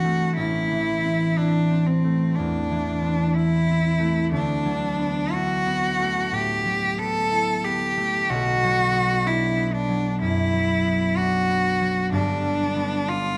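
A single bowed cello sings the melody up front, its rich, smooth tone carrying an even vibrato, while a concert harp accompanies with mellow, ringing fingerpicked notes across its lower and middle range. This dreamy, pastoral impressionist duo moves in a free rubato through Am, D69, Bm and G, with both instruments playing from start to finish of this excerpt. The pair sits up front, the cello close, in a reverberant recital hall whose 1.3-second decay lends the sound a soft halo.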